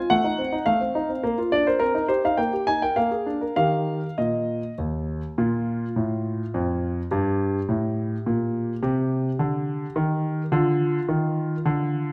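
Cheerful and elegant, this short classical-period sonatina passage, cut from a longer piece, moves in a graceful three-beat lilt with a flexible, rubato feel. A single concert grand piano carries it alone, its intimate, natural tone sitting up front with deep bass and audible action noise, heard through close, detailed microphones in a moderate recital-hall reverb. The opening phrase settles home before the music turns toward a new key at 5.4 seconds, passing through minor-tinged harmonies until it breaks off at 12.1 seconds.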